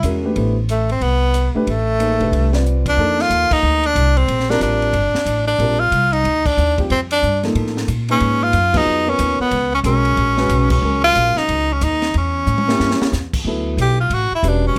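A brisk swing pulse at 183 BPM in 4/4 drives this hypnotic, searching modal jazz excerpt, cut from a longer piece and lasting just under fifteen seconds. A bright tenor saxophone sits up front with a soft attack and vibrato, carrying the melody in its low-to-middle register and stepping into a short solo at 13.5 seconds. Beneath it, a grand piano with an intimate, natural tone and audible action noise supplies the accompaniment, while a pizzicato upright bass on steel strings sounds woody and thumpy near the front of the mix. A compact cocktail drum kit plays dry, with dark cymbals, a high-tuned snare and a punchy kick, adding fills at 2.6 and 12.5 seconds, and the full band punches out several accents along the way. The harmony drifts from Fmaj9 through suspended F13 and Db13 chords and a tense A7b9 before settling on Dmaj9, all framed by a light reverb.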